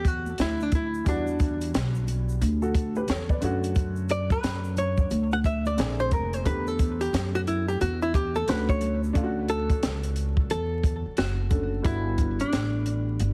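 Jazz-hop in D major at 89 BPM with a smooth, relaxed swing, this short cut opens with an up-front, clean hollow-body archtop guitar soloing through tape echo from 0.0 to 9.1 seconds over a worn, slightly detuned upright piano with audible action noise, a woody pizzicato upright bass, a cocktail kit with a punchy kick and a high-tuned snare, and a very quiet, close tube shaker and congas that drop out at 9.1 seconds, all wrapped in small-room ambience, heavily compressed radio tone and vinyl crackle as chords like Dmaj7, Bb9 and Gmaj7 drift by.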